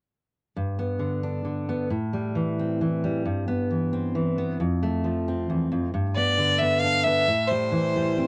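A clear, bowed fiddle enters up front at 6.2 seconds, carrying a smooth, even melody with light vibrato that gives this folk excerpt its yearning, bittersweet character. Beneath and before it, a fingerpicked steel-string jumbo acoustic guitar sets the pulse in three from 0.6 seconds. The guitar's full-bodied tone and audible finger squeaks keep the accompaniment intimate and close. Its harmony moves through G, Am7, Cmaj7 over G and F before returning to G and Am7 as the fiddle joins. Both instruments carry the soft grain of cassette tape, and a light reverb frames this modest home recording, which is cut from a longer piece.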